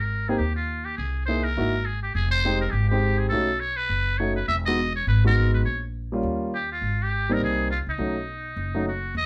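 A warm, swinging mood runs through this short cut from a longer small-group jazz piece in the swing and bop tradition, moving at a brisk 206 BPM in 4/4 with a light swing on the eighth notes. A trumpet with a metal mute carries the melody as the solo voice from the very start, its buzzy, raspy tone colored by vibrato and scooped notes that give it a vintage, gritty edge. Underneath, a pizzicato upright bass sits close to the listener with a woody, growly sound that anchors the low end. A grand piano joins at 0.3 seconds with polished, present accompaniment, sitting up front alongside the other two. The harmony moves through rich colors such as Abmaj7sus2, C7alt, Fm9 and Emaj9 before settling on Abmaj9 and turning toward B7, all within a light reverb that keeps the trio intimate until the close at 9.3 seconds.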